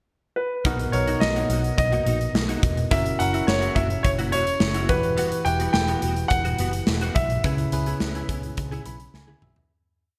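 A polished grand piano opens at 0.4 seconds with a motif-based, short-sustained melody touched by delay, and a glossy, uplifting 1980s-style pop verse gathers around it: a punchy rock drum kit with a big backbeat up front, a dark, foam-muted picked bass driving eighth notes with slides, a bell-like tine electric piano pushing close-voiced chords through a phaser, and a clean, compressed, direct guitar playing a funk-style riff with ensemble chorus in the background, the whole mix set in lush hall reverb and bright digital production before a fade from 7.4 seconds that carries an electric piano fill from 8.6 seconds and a closing drum fill.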